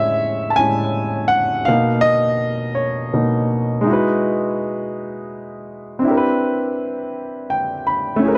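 A solo grand piano, present and polished at the front of a dark, reverberant studio with a touch of tape echo, plays an intimate, warm R&B passage in a slow 6/8 at 55 BPM, moving through Amaj7, Bmaj9, Emaj9 and Cmaj9 before closing this short cut-out from a longer piece with a fill from 7.1 to 8.2 seconds.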